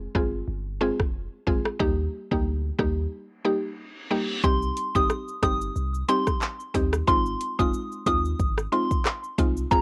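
A swung sixteenth-note dancehall groove rolls in just after the opening on an electronic, produced afro-pop kit, its deep kick, metallic hi-hat, handclaps, rim click and shaker sitting up front with a cassette-tape grit, giving this cut from a longer piece a tough, bouncy feel. Underneath, a boomy 808-style bass with a dark sine tone and a noise layer hits with a fast attack and decays, while a woody, round, mallet-like FM synth pluck, bright and percussive, carries the accompaniment through chorus, tape coloring and plate reverb. The harmony moves from Fm to Eb, then to Cm and Ab6. A break arrives at 3.1 seconds, and an electronic reverse cymbal leads into the second section at 3.8 seconds. From 4.4 seconds, a soft, pure synth bell takes the melody high above the groove, its gentle, mellow FM tone treated with the same chorus, cassette and plate reverb as the pluck. The whole piece has the light reverb and lo-fi character of a home cassette recording.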